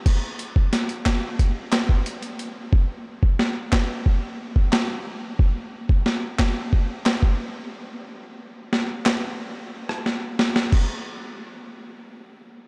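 A straight 4/4 groove at 90 BPM drives this hypnotic, bouncy dancehall excerpt, carried by an up-front boom bap sampler-style drum kit of thumpy kick, high-tuned snare, rim click, handclaps, hi-hat and crash, pitched down, compressed and coated in vintage 12-bit grit, all set in a dreamy mix soaked in huge ambient reverb, with a drum fill at 10.1 seconds before the kit stops at 10.9 seconds.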